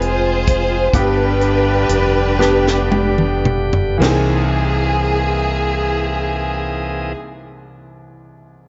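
A smooth, up-front bowed string section carries the melody in this solemn, fervent slow gospel passage in 6/8, set over a clear, short-sustained grand piano, shouting, lightly overdriven tonewheel organ chords through a stopped rotary speaker, and a round, punchy fingered electric bass, while a tight funk drum kit with a high-tuned snare plays a fill as the pace slows and drops out at 4.3 seconds, the piano then carrying on alone from 7.1 until 8.7 seconds in a small room touched by light reverb.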